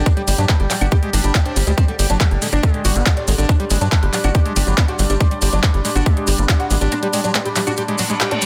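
A dense, heavily limited modern master with little reverb carries this intense, hypnotic psychedelic trance excerpt. An overdriven, up-front electronic kick, which stops at 6.6 seconds, and a punchy sawtooth sequencer bass, which drops out at 6.9 seconds, drive the groove beneath a layered, overdriven kit of handclaps and bright hi-hats and very quiet, grainy maracas. A squelchy, resonant acid bass riff with delay and a woody, plectrum-plucked fretless oud melody through phaser and delay pump against the beat alongside an evolving drone and a warbling, lo-fi pad set in the background, and an electronic reverse cymbal enters at 7.9 seconds.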